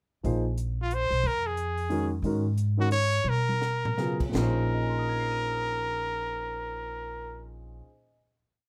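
Swinging in a lilting 3/4, this brief, spiritual and searching modal jazz piece puts a forceful, brilliant trumpet up front with scooped, vibrato-tinged motifs over syncopated quartal comping from a grand piano, a woody, thumpy pizzicato upright bass in a two-feel, and a dry cocktail kit with dark cymbals keeping time on the hi-hat, as the music slows from 2.2 seconds, the drums play a fill at 3.2 seconds and the band settles onto a final chord at 4.4 seconds, all captured close and detailed with light reverb.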